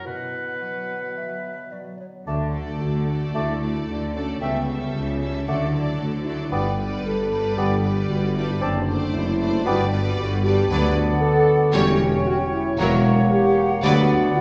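Urgent and dramatic, this rubato orchestral passage at 114 BPM, cut from a longer piece, opens in D major with an airy, close-miked flute, a distant oboe, a mellow bassoon and a ringing harp playing arpeggios in the background, before tuba, cellos and double basses enter at 2.3 seconds and the violins and violas join at 2.5 seconds. Lush, bowed violins carry a focused melody over a second violin line and an intense, bright viola part, while a punchy horn section holds sustained chords from 2.8 seconds as the harmony turns to B minor at 10.7 seconds. A recital hall reverb lends the ensemble a roomy, resonant glow.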